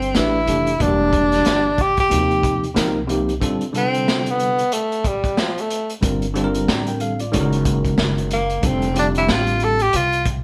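A breathy tenor saxophone opens this smoky, cool jazz-hop excerpt at 92 BPM, carrying the melody over pizzicato upright bass and a crunchy breakbeat drum kit, with a bell-like tine electric piano joining at 0.1 s. The groove sits in 4/4 with a 60% swing on the sixteenths. The saxophone is up front and present, with subtone, vibrato and scooped notes in a jazz style. The drums are saturated and gritty, with a high-tuned snare, a tight kick, hi-hat and a rolled-off top, while the woody, thumpy bass has a dark gut-string tone. The clean, bright electric piano accompanies through chords such as Fmaj7, Ebadd9, Dm7 and Gm9, all heard as a band playing live in one room with moderate studio reverb. A break arrives at 3.4 s as the saxophone takes a solo that runs until the end, with the harmony settling on F at 8.6 s.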